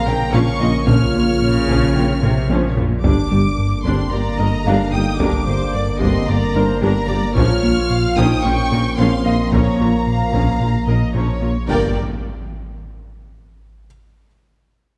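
A cinematic hybrid of orchestral and electronic film scoring, this brooding, tense passage moves at 111 BPM in a straight 4/4, cut from a longer piece and shifting between B-flat minor and G minor. A lush symphonic violin section carries the melody high above a smooth, even studio violin line, while a dark, woody viola section sits in the background and a very quiet symphonic cello section, distant bowed double basses and a mellow solo tuba anchor the low end. Mellow French horns and soft-attacked trombones hold sustained chords in the background. Electronic weight comes from a deep, thick, saturated sub bass and a sawtooth-and-triangle synth bass riff coloured by ring modulation and vibrato, with a very quiet, present baby grand piano adding texture. A band-limited, vintage-sounding taiko ensemble struck with hard sticks enters at 0.9 seconds, with a drum fill around 2.2 seconds, and an up-front electronic impact lands at 11.7 seconds as the harmony returns to G minor. 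A moderate scoring-stage reverb gives the ensemble a sense of space.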